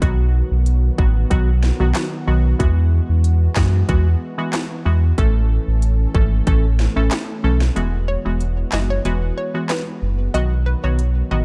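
A straight 4/4 dancehall groove at 93 BPM in E major comes from an overdriven, up-front island pop drum kit of tight kick, sharp snare, rim click, handclaps and smooth hi-hat, with a deep, full sine sub bass doubled at the octave, crisp detuned wavetable chord stabs and a smooth, full-bodied analog pad both pumping against the sidechain, moving through B, Eadd9 and A in a sunny, bouncy, dark-toned production with little reverb, until a break at 7.8 seconds brings in a round, bright analog pluck melody with chorus and delay at 8.1 seconds, and the drums drop out at 11.1 seconds.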